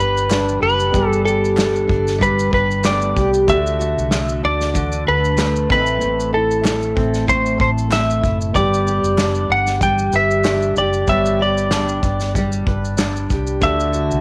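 A clean lap steel guitar carries the melody from the very start, its compressed slide tone sitting up front in this easy-going, carefree acoustic pop cut from a longer piece. Beneath it, a double-tracked, fingerpicked jumbo acoustic guitar adds a dark, full-bodied accompaniment, while a clear grand piano stays in the background, both colored by cassette tape. A vintage foam-muted electric bass gives a round, punchy low end, and an unplugged drum kit played with bundle sticks keeps the groove on kick, snare and shaker, its sound also passed through cassette tape. Crisp group handclaps, distant and set in a large room, join at 0.3 seconds and stop at 13.1 seconds. The gently swung sixteenths and a simple progression moving from G through D and Am and back give the whole passage a relaxed, homemade feel, wrapped in light reverb and small room ambience.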